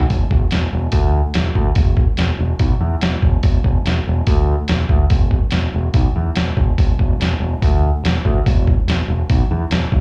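Growling, overdriven picked electric bass sits up front in the low register beside a muffled, pitched-down sampler-style drum kit with a thumpy kick, medium-tuned snare, hi-hat and toms, driving this swaggering, raw garage rock excerpt at 144 BPM in straight 4/4, heard as a live gig through the venue's PA with a small club room around it.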